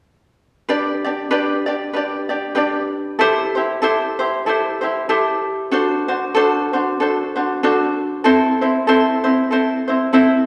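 A fingerpicked acoustic ukulele sits up front, its light, warm tone carrying this dreamy, languid Hawaiian excerpt at 95 BPM in G major with a gentle swing on the eighth notes. Playing from 0.7 to 10.5 seconds, it moves through G, C6, D7 and Am in an accompaniment role, ranging from C4 to D5. A wet recital-hall reverb with a 1.4-second decay wraps it in the ambience of a church or concert hall, cut from a longer piece.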